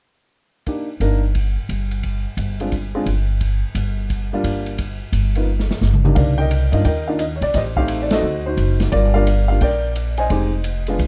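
A brisk swing at 174 BPM in 4/4 carries this moody jazz piano trio fragment, cut from a longer piece. A present, up-front baby grand piano leads the melody over a woody, thumpy pizzicato upright bass that sits boldly forward from 1.0 seconds, while an acoustic drum kit with dark cymbals, a medium-tuned snare and a boomy kick keeps a smooth, rolled-off pulse in a dry studio room. After an opening on Gm, a drum fill from 5.5 seconds leads into a new section that moves from Cm11 through Am7b5, D7b9 and Gm7 to Fm9, with a band accent at 8.1 seconds, all within a dark, warm production.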